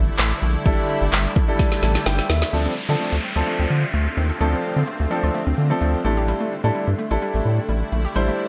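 Dance-pop with a driving, confident feel, cut from a longer piece, where a shimmering ambient pad with chorus and a round analog bass pump under sidechain from the start, a deep house drum kit with a woody snare and gated reverb plays up front until a shared drum and grand piano fill ends at 2.5 seconds, a warm concert grand piano accompanies from 0.7 seconds, and a glassy wavetable pluck with digital delay sits in the background beside an electronic downlifter, all in a bright 1980s-style digital production.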